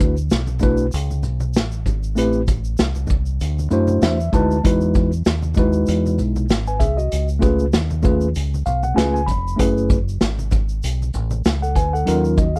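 A 16th-note swing at 97 BPM in 4/4 carries this nocturnal, cool jazz-hop cut, where a vintage kit of hi-hat, punchy kick, medium-tuned snare and shaker pumps in a small room with a rolled-off top, a dark, round fingered electric bass sits up front, bright egg shaker and congas with soft hands stay close and dry, and a mellow, clean tine electric piano moves through chords from D69 and Emaj7 to F#m11, adding short fills at 3.7 and 8.4 seconds, all with little reverb.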